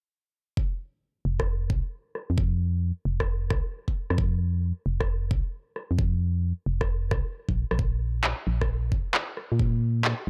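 A dark, hollow FM bass with an organ-like tone and a fast, percussive attack that decays stands out in this moody, soulful two-step garage excerpt, moving between F1 and Bb2. It sits up front beside a knocking, layered electronic kick that starts the groove at 0.6 seconds, with the bass entering at 1.3 seconds. Electronic rim clicks and handclaps, also layered and produced, join at 1.4 seconds, their sound low-pass filtered and re-recorded in a small room. The beat runs at 133 BPM in 4/4 with a 66% swing on the sixteenths, giving the rhythm its skipping garage shuffle. A filter sweep runs across both the drums and the bass for the whole passage, and the dry mix keeps every hit close and direct.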